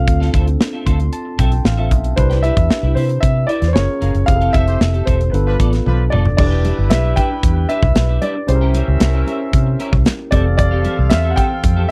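Urban and upbeat, this polished 1980s jazz-funk pop excerpt, cut from a longer piece, moves in a straight 4/4 over lush chords such as Dm9, F#maj9 and C7b9. A concert grand piano carries the melody with an intimate, naturally sustaining tone, audible action noise and a touch of slapback echo. A barky, bell-like tine electric piano, lightly overdriven through a combo amp with subtle chorus, supplies accompaniment and adds a fill near the start. Up front, a dark, round, foam-muted fingered electric bass sits beside a punchy studio drum kit with a medium-tuned snare, rolled-off top, toms and crash, while a clean, picked electric guitar riff glimmers through ensemble chorus. A tight, clear horn section enters at 4.7 seconds with a distant, roomy second line as the band hits an accent and the drums fill, and very quiet, damped congas with hard hands join at 6.4 seconds, all captured in a dry, close 1970s-style studio sound.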